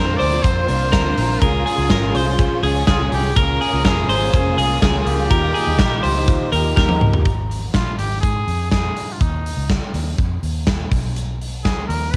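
Youthful and bright, this 123 BPM jangly indie pop excerpt pairs a clear, vintage-toned trumpet melody with vibrato over a dark, round, foam-muted electric bass and an up-front big rock drum kit, while a clean twelve-string electric guitar with spring reverb plays arpeggios, a full-bodied fingerpicked acoustic guitar with finger squeak, very quiet detuned analog keys with chorus and phaser, and a bowed string section with portamento all drop out after a drum fill that ends at 7.3 seconds, all heard through the soft haze of a home cassette recording.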